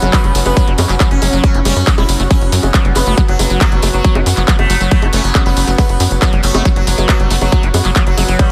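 Set in a light reverb, this hypnotic, alien psychedelic trance excerpt at 138 BPM rides on a punchy, overdriven electronic kick drum from 0.1 s and a tight, nasal sequencer bass driving up front, while a buzzing, shimmering sitar carries the melody through phaser, delay and sidechain pumping over an F#5 chord; a squelchy liquid acid bass riff, a bubbling stepped-filter texture, an overdriven big-room dance kit of bongos, handclaps and hi-hat, a jingly close tambourine and a very quiet, deep, moody ambient pad fill out the hypnotic groove.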